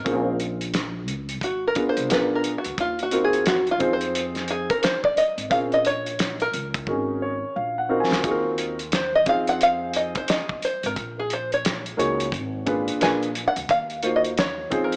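A relaxed 88 BPM swung groove in 4/4 sets the pace for this nocturnal, mellow jazz-hop excerpt in Eb dorian, where a cloth-damped drum kit with a fat snare and tight kick thuds along from 0.1 seconds beneath pizzicato upright bass with a woody tone. A fingerpicked open-back banjo, plunky and twangy, carries the melody as a solo up front, over a dark, worn grand piano whose boxy chords move through Bbm9, Ebm69 and Fm7. Drums and piano each play a fill at 6.9 seconds, and light reverb with a small room ambience gives the whole track a small speaker sound.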